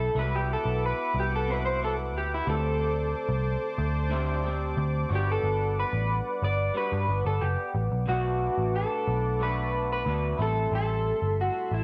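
A moderate spring reverb and digital ambience give this short indie and bedroom pop cut from a longer piece a hazy, nostalgic, dreamy sound. At 91 BPM in straight 4/4 and G major, a bright, twangy guitar through a small old amp carries the melody with analog chorus and slapback echo, playing a solo that runs until 8.1 seconds. Beneath it, a second small-amp guitar, dark, lo-fi and up front, plays accompaniment with subtle chorus and a warbly pitch drift. A smooth, wave-folded analog pad with a soft attack holds sustained chords under chorus. A round, foam-muted picked bass sits prominently at the bottom. The chords move through Cmaj9#11, D7sus4 and Gmaj7 before the second section at 8.1 seconds shifts to Bm7 and Am7.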